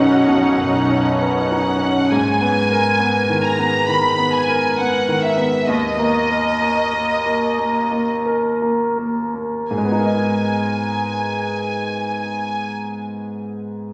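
In a loose, rubato 4/4 that slows from 0.3 to 9.7 seconds, this bittersweet, moving film-score fragment unfolds for orchestra. A rich, focused violin section carries the melody up front with vibrato, while a clear grand piano with long sustain, smooth and slightly vintage in tone, supplies accompaniment through to the close. In the opening moments a fuller bed briefly sounds: a lush, warm second violin line in the background, a barely audible clarinet, a clear viola section, a dark, distant French horn section holding a soft-attacked chord, and low strings from a barely audible cello section and a very quiet double bass section, all gone by about 1.9 seconds. A mellow, ringing concert harp plays fingerpicked arpeggios in the background until 4.9 seconds, after which violins and piano carry on together over chords moving from G#madd9 through D#5 and back to G#madd9. A wet concert hall reverb surrounds the ensemble, lending it a spacious, tender glow.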